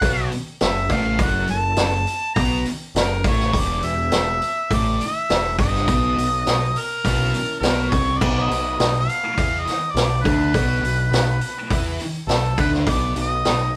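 Blues rock in the southern rock vein, this driving, gritty clip moves at 103 BPM in a straight 4/4 in B mixolydian, cycling through F#7#9, E7#9 and B7 chords. An up-front, mellow harmonica sings a jazz-tinged solo melody with light vibrato, scooped notes and overdrive over a thick, double-tracked fuzz guitar riff and a growling, overdriven picked bass. A vintage acoustic kit with dark cymbals, a high-tuned snare and a punchy kick drives the band, while a very quiet, smooth tonewheel organ enters at 0.9 seconds with sustained chords through a rotary speaker, all captured as a live band in one room with moderate reverb.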